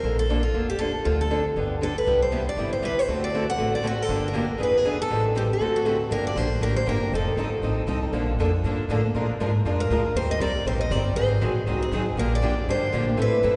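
A bright, fresh-stringed steel-string acoustic guitar carries the melody up front with audible finger squeaks, dropping out at 7.6 seconds and returning at 9.8 seconds. Beneath it, a dark old ladder-braced acoustic guitar and a thumpy, gut-strung pizzicato upright bass drive this bittersweet, virtuosic jazz manouche swing in G minor at a brisk 237 BPM. A parlour-style steel-string guitar joins the accompaniment in the background from 2.1 seconds, and the whole excerpt sits in a long cathedral reverb with a soft, rolled-off top end, recorded in a church or concert hall.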